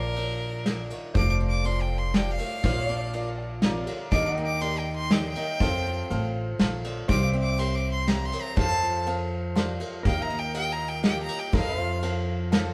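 A clear, up-front fiddle with light vibrato carries the melody through this sunny, heartfelt honky-tonk and classic country piece at 121 BPM in 3/4. Behind it, a woody, thumpy pizzicato upright bass and a soft brush kit with dark cymbals and a punchy kick hold the groove, while a bright, boxy picked acoustic guitar adds swing-style accompaniment and a clean pedal steel sustains chords with volume swells in the background. A slightly detuned upright piano enters at 1.2 seconds and adds short fills around 3.1 and 9.3 seconds, all played live in a moderately reverberant stone room.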